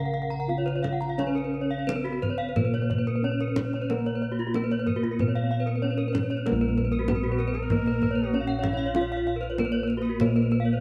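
In a straight 4/4, this brilliant Balinese gamelan excerpt sets a mellow bronze metallophone melody, played with padded disc mallets, over round, up-front bossed gongs carrying the bass and a deep, band-limited kendang. Two more metallophones struck with horn mallets ring out arpeggios, one dark and smooth, the other boxy, their paired tuning producing shimmering beats. From 7.2 s to 9.8 s an airy, reedy bansuri adds a second line with a soft attack and vibrato, and the close, detailed recording carries light reverb.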